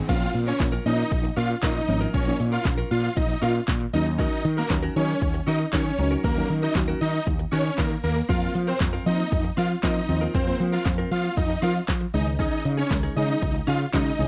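A straight pulse from an overdriven deep house drum kit, with its punchy kick, fat snare, metallic hats, handclaps, shaker and crash, drives this energetic dance-pop excerpt, joined by a faint, jingly vintage tambourine from 0.6 seconds. Up front, huge, lush, bright supersaw chords carry the melody with sidechain pumping and slapback echo, while a punchy fretless electric bass pumps along beneath and a soft, dark, full-bodied chord stab with chorus sits in the background. A clean, compressed, direct-recorded electric guitar picks a quiet riff with subtle chorus over a Bbm, Ebm7, Fsus4, Dbsus2 progression, all captured in a dry, close 1970s-style studio sound.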